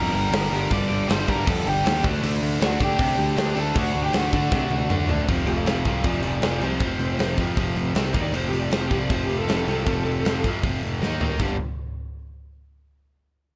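A driving 157 BPM straight 4/4 punk rock pulse in G minor sets an aggressive, raw mood, with a big acoustic rock kit up front (punchy kick, bright cymbals, fills at 4.5 and 11.0 seconds) under a dark, round fuzz bass, a warm biting overdriven rhythm guitar and a bright distorted guitar tucked in the background, while a dark overdriven lead guitar through a small cranked amp carries the melody and takes a solo from 5.3 seconds, all in a light reverb in this excerpt cut from a longer piece.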